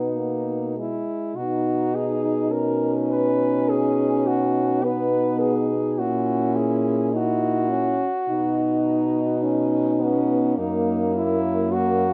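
Close, detailed microphones in a moderate stone room capture this elegiac, yearning excerpt of a lyrical classical piece for horn quartet in B major, unfolding in a rubato 4/4 at 52 BPM, where a clear, up-front French horn with light vibrato and soft attack sings the melody above three mellow horns: one with a vintage tone on the second line, a distant, roomy one set in the background on accompaniment, and an up-front one on the bass, as the harmony moves from B through F#7/A# back to B and comes to rest on F#.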